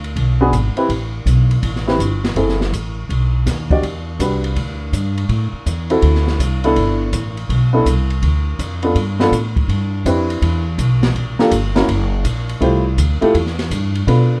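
Relaxed small-group swing and bop jazz at 164 BPM in G major, shifting to C major at 9.7 s, with a woody, growly pizzicato upright bass up front, an intimate, mellow baby grand piano entering at 0.4 s with audible action noise and short sustain, and a smooth acoustic drum kit of hi-hat, kick, ride and snare with dark cymbals and a boomy kick, heard in a moderate club reverb in this cut from a longer piece.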